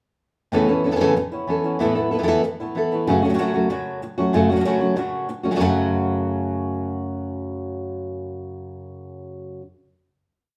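A full-bodied nylon-string guitar anchors this short flamenco piece, sitting up front with a deep classical tone as it carries the accompaniment through rasgueado strumming punctuated by taps on the top. Beside it, a second flamenco guitar, also fingerpicked and close, supplies stabs that keep the cycle turning at a lower level in the mix. The mood is passionate and mournful, with the harmony moving from Aadd9 through Esus4 to F#m in a straight, brisk groove. At 5.6 seconds the groove gives way to a final chord, and both guitars stop at 9.6 seconds. The two players sound live together in one large studio, wrapped in a wet reverb that lends the plucked strings a warm glow.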